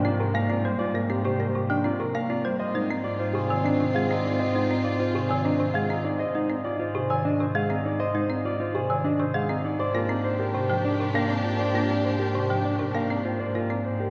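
Set in a wet cathedral reverb, this bright, propulsive passage of minimalist classical pattern music in triple time is cut from a longer piece. A grand piano carries the melody over a dry, woody marimba struck with hard mallets, clean fingered arpeggios on a dark electric guitar, and a smooth, bowed double bass holding one low note. At 2.6 s a rich, focused violin section with vibrato adds sustained chords while a French horn plays a second line in the background; both drop out at 6.0 s and return at 9.8 s.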